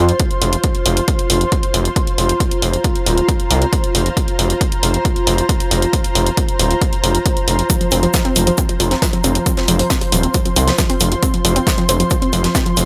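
A straight 4/4 pulse at 136 BPM drives this excerpt of peak-time techno, its heavy, layered electronic kick and electronic hi-hat carrying a large-room sheen under a gritty, saturated sawtooth synth bass that pumps to the sidechain alongside an ethereal, detuned pad washed in ensemble chorus and reverb, all resting on an F5 chord. At 7.7 seconds a warbling, lo-fi pluck riff enters with chorus, overdrive and tape echo, joined by a tight acoustic funk kit whose high-tuned snare, hi-hat and shaker sound small-roomed and natural. The mood stays industrial and driving, set in light studio ambience.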